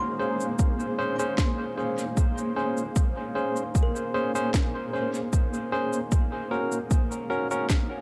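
A blurred, detuned granular cloud pad opens this short ambient dub cut, holding sustained chords in Bb minor with a slow attack, long release and its own built-in reverb, while a woody, ringing kalimba traces arpeggios through dub echo from the background. At 76 BPM in a straight 4/4, the mood is deep and spacious, the harmony resting on Bbm9 before moving to Ab9sus4 at 6.1 seconds. A barky, clean tine electric piano sits up front with stabs through dub echo, joined by an electronic shaker and woody, tape-warm snare that also carry dub echo and were re-recorded in a large room. An overdriven, layered electronic kick drum anchors the low end from 0.6 seconds, placed prominently as the loudest part and also re-recorded in a large room. The kalimba drops out at 6.8 seconds, and the whole is framed by light reverb in a dark, warm production, heard as a fragment of a longer piece.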